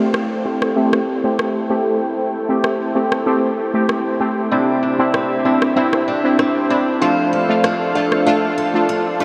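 A dreamy mix soaked in a huge ambient reverb sets the tone for this sultry, tough dancehall fragment, cut from a longer piece and moving at 96 BPM in a straight 4/4 in A minor. Up front, a brassy, nasal synth brass stab with a punchy, fast-attack filter pluck carries the accompaniment, its bright, detuned sawtooth tone shaped by chorus, phaser and a low-pass filter. Behind it, a smooth, detuned sawtooth pad with a soft attack holds sustained chords in the background, softened by chorus and its own low-pass filter, while a filter sweep runs across the whole passage. An electronic rim click keeps the drum part produced. A picked steel-string acoustic guitar, bright with an auditorium-like character and trailed by analog delay, is heard for a brief moment at the start and then returns at 4.5 seconds to play arpeggios. The harmony moves from Am7 to Cadd9 at 4.5 seconds and settles on F6 at 7.0 seconds.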